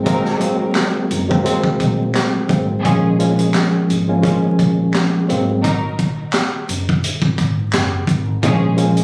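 A gritty, tough boom-bap hip-hop groove rides a lightly swung sixteenth-note feel in 4/4, driven by a crunchy breakbeat kit of kick, snare, hi-hat and handclaps that sits up front with a high-tuned snare, a tight kick and a saturated, rolled-off top. A worn, slightly out-of-tune tine electric piano carries the accompaniment, lightly overdriven and cassette-coloured as if heard through built-in speakers, with filtering trimming both ends of its sound. Underneath, a woody, bright pizzicato upright bass on steel strings holds the low end, while a bowed studio string ensemble adds focused stabs with vibrato, a smooth top and tape echo from further back in the mix. The harmony moves from Ab9 to Bbm7 and Ab7sus2, with a break arriving at 5.6 seconds before Bbm7 returns at 8.4 seconds. Sounding as though captured on a phone in the room, this cut from a longer piece carries vinyl crackle, compression and a light studio reverb.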